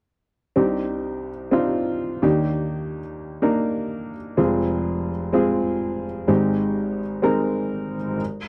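A woody, boxy upright piano with short sustain sits up front from 0.6 to 8.2 seconds, playing a hopeful, uplifting pop accompaniment at 126 BPM in a straight 4/4 through Cmadd9, Ebmaj7, Fm and Abmaj7, tuned to A4 = 436 Hz and captured in a dry, close 1970s-style studio sound with light reverb in this short cut from a longer piece.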